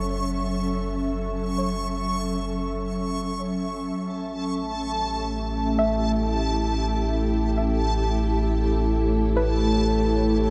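Luminous and serene, this ambient passage, cut from a longer piece, floats in free time inside a vast, echoing space with a long cathedral reverb. An ethereal, airy pad sits up front with sustained chords that ease in slowly and linger, its detuned sawtooth voices softened by ensemble chorus, moving from F#m7 to A7 at 4.0 seconds. Beneath it a deep, warm sub bass holds the floor with a round, mellow sine tone, while a soft pluck traces gentle arpeggios in the background, dark and wave-folded, blurred by chorus and delay. High above, a reversed granular texture swells with a bright, dreamy shimmer. At 5.2 seconds an evolving analog drone joins in the background, its pulse-width modulation and ring modulation adding a shifting grain.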